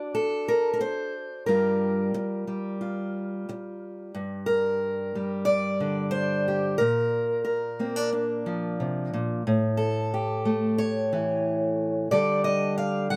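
Close, detailed microphones and a light reverb put a solo fingerpicked steel-string acoustic guitar up front in this haunting, wistful folk piece cut from a longer work, its fresh strings ringing from low G2 to F#5 with audible finger squeaks as it moves from D and Gm7 into a new passage at 4.1 seconds through Gm, Bb and A7 before coming to rest on Dsus4.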